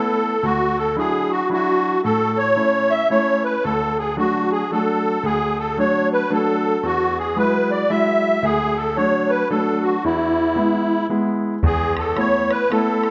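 Heard in a reverberant church-like hall with a dulled top end, this cheerful, bright Celtic folk waltz fragment swings gently as a reedy, shimmering musette accordion carries the melody up front over the clear, intimate baby grand piano, whose long sustain and audible action noise give the accompaniment a natural closeness, until an open, boomy bodhran enters close and dry at 11.6 seconds.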